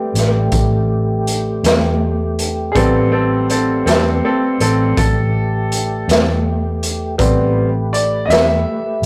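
A bright, woody upright piano opens this mournful, soulful slow blues in 12/8, soloing up front over an Am7 chord while a mellow tonewheel organ holds dark, lightly overdriven chords through a slow rotary speaker and chorus vibrato. A round, foam-muted electric bass and a gritty garage drum kit with a punchy kick and a pumping small-room sound join almost at once. From 1.6 s a slightly broken-up, lo-fi guitar with tremolo sits in the background, all within a rough rehearsal-room recording with light reverb and saturation.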